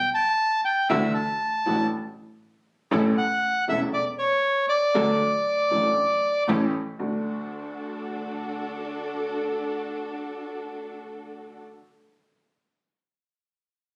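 In a rubato 4/4, this elegant, playful tango fragment opens with a reedy, vintage bandoneon melody up front, joined at 0.9 s by a woody, slightly detuned upright piano accompaniment, veiled con sordino string stabs and a distant bowed double bass with vibrato, all heard as if caught on a phone in a club room with light reverb, until the bandoneon stops at 6.4 s and the piano and strings carry on to 11.6 s.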